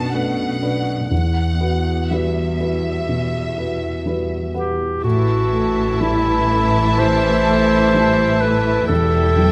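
Moving and bittersweet, this slow, rubato cinematic passage at 61 BPM opens with a lush, expressive violin section carrying the melody over a dark, mellow baby grand piano and a focused, bowed cello section holding the bass. A bright, up-front solo clarinet takes a second line from 4.5 seconds, and at 5.0 seconds an even, lightly vibrato violin section adds another line while an intense viola section and a rich double bass section fill out the harmony and low end as the chords move from Bm7 and Emadd9 to Am. Light reverb and close, detailed microphones give an intimate sound to this passage, which is cut from a longer piece.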